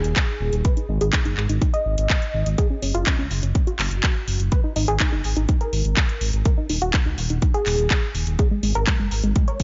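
Bathed in light reverb and digital ambience, with a dull, rolled-off top end, this short excerpt of bittersweet, driving progressive house runs at 124 BPM in 4/4 over chords moving between D#sus4, G#5 and F#5. A tight, mellow sawtooth synth sequences plucky arpeggios through chorus and dub echo under a constant filter sweep, while a deep, rumbling detuned saw bass sits up front with saturated beating. Both pump against the punchy, tape-toned electronic kick that enters at 0.2 s, and a house kit of handclaps and metallic hi-hats pumps on its hats.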